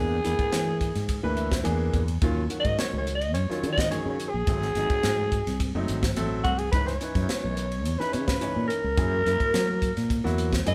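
A growling soprano saxophone leads this driving, funky slice of electric jazz fusion at 107 BPM in a straight 4/4, soloing up front over a warm grand piano and a fretless electric bass, with a crisp fusion drum kit joining at 0.2 seconds. The saxophone's tone is raspy and gritty, with subtone, a light vibrato and scooped notes giving its jazz phrasing a vintage edge, and it ranges from F#4 to D#5. The piano comps beneath and slips in a short fill from 1.1 to 2.2 seconds, while the fretless bass sounds round and punchy. The drums are polished and airy, pairing dark cymbals on hi-hat and ride with a medium-tuned snare and a punchy kick placed up front. The harmony moves through E7#11, D#m9, G#7b9, C#m9 and F#9, and the band sounds like it is playing live together in one studio room with moderate reverb, in a brief section cut from a longer piece.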